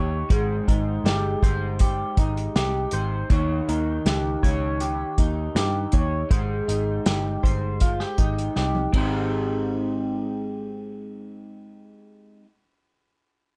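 An up-front acoustic drum kit, played with bundle sticks and roughened by vintage 12-bit sampler grit, sets a laid-back 80 BPM pulse with a punchy kick, medium-tuned snare, dark cymbals and toms, then closes with a fill at 8.6 s and drops out at 9.1 s. This nostalgic indie and bedroom-pop piece in Ab major, cut from a longer work, moves between Abmaj7 and Eb7, carried by a bright, twangy picked electric guitar through a small old amp, slightly broken-up and shimmering with analog chorus and vibrato. Beneath it, a foam-muted picked electric bass adds a round, dark low end, all set in light reverb and an airy small room.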